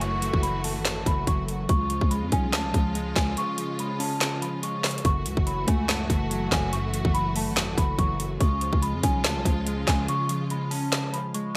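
A bright, 1980s-style digital sheen with digital ambience frames this melancholic, menacing trap excerpt in F# minor at 143 BPM in a half-time feel, where a bell-like, delicate celesta carries the melody over chorused, phased digital keys, lush bowed strings and a growling, buzzy 808 bass that drops out at 10.1 seconds, while an up-front trap kit with a hard-clipped kick, woody snare, metallic hats and handclaps sits in gated reverb, and a very quiet downlifter sounds over the opening 1.7 seconds as the chords move between F#m7 and C#.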